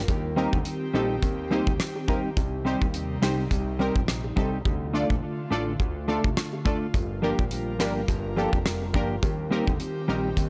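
Dry, gritty hardware sound in a small room carries this hypnotic, tough dancehall excerpt in swung 4/4, where a damped 70s drum kit with a fat snare and tight kick sits up front and drops its hi-hats from 4.7 to 6.9 seconds, over a thick, detuned sawtooth analog bass, while punchy, brassy synth stabs with chorus and phaser, a dark, clean, fingered electric guitar playing arpeggios through tape echo, a breathy pad pumping softly in the background, and very quiet high-tuned bongos fill out the groove.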